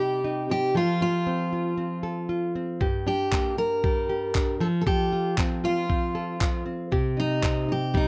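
A full-bodied, picked steel-string acoustic guitar carries a wistful, reflective melody over dark, fingerpicked nylon-string guitar with audible finger squeak in this short acoustic pop excerpt, as a gritty, compressed soul sampler-style drum kit with thumpy kick and handclaps joins at 2.8 seconds, all captured close and detailed with little reverb.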